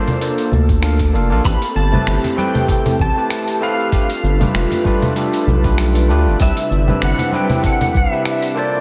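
This sunset chillout excerpt opens with a clean, fingerpicked pedal steel guitar carrying the melody from D5 to B5 with slide and volume swells, coloured by ensemble chorus and analog delay. It plays over a barky, overdriven tine electric piano played through a combo amp and a soft, airy, breathy pad that holds sustained chords with chorus. At 97 BPM in 4/4 with a gentle 16th-note swing, the mood is warm and smooth as the harmony moves from Bbmaj9 through Am7 and G9 to Cmaj7. A dusty soul sampler-style kit of cabasa, congas, finger snaps and hi-hat arrives at 0.1 seconds, gritty and compressed as if re-recorded in a small room, and a thumpy, tape-warm electronic kick joins at 0.7 seconds. A round, dark analog bass with a fast-attack filter pluck sits up front in the low register, the loudest part of the arrangement. Ringing, medium-tuned congas played with soft hands stay in the background from 1.9 seconds, and a lush hall reverb soaks the whole mix in a dreamy haze.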